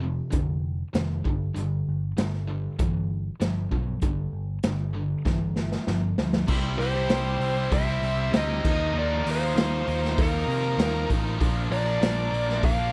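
This driving, swaggering classic rock excerpt opens with two picked electric guitars playing a riff in the background, one overdriven and colored by a phaser, the other tight and bright with distortion, over an up-front, amped electric bass. A moment later a raw garage drum kit joins, an acoustic kit in a small, pumping room with a boomy kick, medium-tuned snare, hi-hat and crash, its sound saturated, gritty and rolled-off at the top. A drum fill at 5.3 seconds leads into a new section, where a very quiet tonewheel organ enters at 6.5 seconds with full, shouting sustained chords, clean apart from key click, chorus vibrato and a slow rotary speaker. At 6.8 seconds a bluesy, distorted lead guitar takes the melody with slapback echo, while a dark octave-fuzz guitar plays a second line behind it. The harmony moves from power chords to C, Ebsus2 and Bb, all in a straight, studio-reverb setting that feels driving and swaggering.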